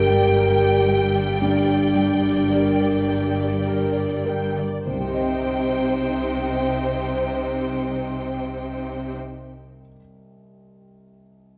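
In a rubato 6/8 at a slow 33-40 BPM that slows through the opening 4.9 seconds, this longing, moving cinematic film-score excerpt in C minor sets a rich, vibrato violin melody over a lush second violin line, background violas, mellow sustained French horn chords, a very quiet ringing harp arpeggio, a clear cello bass and a dark, woody double bass, all moving from Gm to Cm at 4.9 seconds before the strings and horns stop at 9.1 seconds, leaving the harp to ring until 10.0 seconds and an intimate, very quiet grand piano with audible action noise to close alone at 11.6 seconds in a wet scoring-stage reverb.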